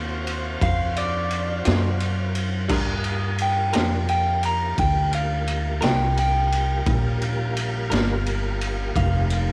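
A slow blues in 12/8 at 58 BPM (dotted quarters) in G minor, this brooding, soulful excerpt is cut from a longer piece and carries the character of a home cassette recording in a lightly reverberant space. A tonewheel organ holds smooth, clean chords throughout, turning through a slow rotary speaker with chorus vibrato, while a distant, roomy horn section sustains jazz-style chords in the background until 2.7 seconds, when the harmony moves from D7#9 to Gm7. Up front, a woody pizzicato upright bass on steel strings anchors the low end, and a raw garage drum kit enters at 0.3 seconds with a boomy kick, medium-tuned snare, ride and crash, its sound saturated and gritty with a rolled-off top. Two picked electric guitars through a small old amp sound slightly broken-up and lo-fi: one plays a high second line from 0.6 seconds, and the other, compressed and set in the background, adds tremolo-soaked accompaniment with plate reverb. 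A clean electric guitar solo runs across the whole passage.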